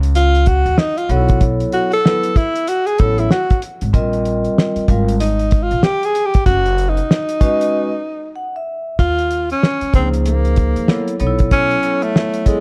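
A dark, warm small-room production frames this cool, nocturnal jazz-hop excerpt, where a cloth-damped, thuddy drum kit with a fat snare and tight kick swings beneath woody, pizzicato upright bass and a mellow tenor saxophone solo with vibrato, while a soft-mallet vibraphone rings in at 1.1 seconds and adds a fill from 8.0 seconds during a brief break.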